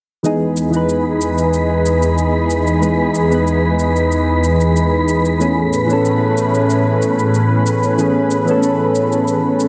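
Blissful and smooth, this sunset chillout excerpt moves at a relaxed straight pulse, resting on an Emaj7 chord before shifting to Amaj9 at 5.4 seconds. Soft, round electric-piano-like synth keys with chorus, phaser, a low-pass filter and tape echo sit up front beside a lush, thick, detuned unison pad that swells in slowly with chorus and phaser. An electronic, layered shaker ticks beneath, and an airy, breathy wind-like tuned noise texture drifts in at 0.7 seconds, all bathed in a lush hall reverb and squeezed into a heavily compressed radio sound.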